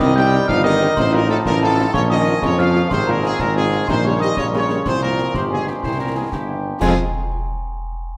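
A military-style march for wind band in 6/8, martial and resolute, cut from a longer piece and heard in a roomy recital hall. A dark, distant trumpet section carries the melody over an up-front tuba bass, while a clear euphonium, a bell-like glockenspiel struck with rubber mallets and a very quiet, soft-edged woodwind section weave second lines. Very quiet trombones hold sustained chords, mellow French horns enter at 0.2 seconds with light vibrato, and concert snare, bass drum and dark clash cymbals sit in the background as the harmony moves through a C7 toward a closing F minor.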